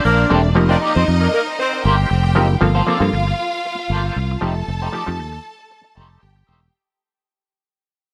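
A clear, lush string section and a bright, clean semi-hollow electric guitar open this driving, danceable disco fragment at 116 BPM in a straight 4/4, the guitar colored by wah and tremolo. A punchy, distant horn section fires stabs with tape echo in the opening moments, ending at 1.8 s, while a growly, up-front fingered electric bass anchors the low end. A muted clav, overdriven through a combo amp, adds a percussive, nasal accompaniment with a stringy, hollow character. The harmony moves from Bbmaj13 through F9sus4, then shifts to Gm11 and F9 as a new section begins at 2.6 s, where the piece starts fading out. Light reverb gives the smooth, focused strings and the rest of the band a polished studio sheen in this cut from a longer track.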